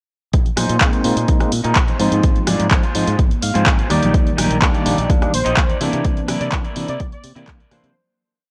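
A four-on-the-floor kick, overdriven and punchy and re-recorded in a large room, sits up front and drives this sunny, funky filtered disco house groove. A tape-toned analog drum machine adds closed and open hats, rim clicks and a clapped backbeat, its hats pumping with the sidechain, while distant maracas and high and low congas sit very quietly far back in the room. A bright fingered electric bass jumps octaves beneath a bell-like tine electric piano, treated with phaser, playing a rhythmic chord riff in close voicing. Alongside it, a slightly broken-up, picked electric guitar plays funk chord rhythms, and both the keys and the guitar carry 12-bit sampler grit. A clean electric guitar fill appears at 3.2 seconds, and a bold, fat sawtooth synth brass with chorus enters at 5.3 seconds with short sustained phrases just as the track fades out from 5.4 seconds. A filter sweep runs through the piece, and the mix has a dry, gritty cassette character.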